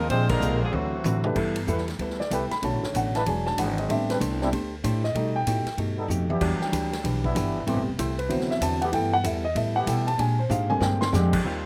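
Joyful and energetic, this short excerpt of big band swing moves at a brisk 190 BPM in G major with a swing feel. It opens with a bright saxophone section carrying the melody, up front and smooth on top, over a clear trombone second line, both touched by slapback echo, and a band accent lands at 0.3 seconds before the horns drop out around 1.3 seconds. From 1.4 seconds the grand piano takes a solo through to the end, its intimate tone carrying audible action noise and a slapback echo, while a warm trombone section holds soft-attacked sustained chords with light vibrato beneath it. A woody, thumpy pizzicato upright bass on gut strings anchors the whole passage, and a dark, clean, compressed hollow-body electric guitar fills in the harmony. The drum kit has a punchy kick and a medium-tuned snare, with fills that kick the solo off and mark its middle and close. The sound is dry and recorded outdoors, with chords moving through colours like G69, Bm7, Am11 and D13 before returning to Bb13.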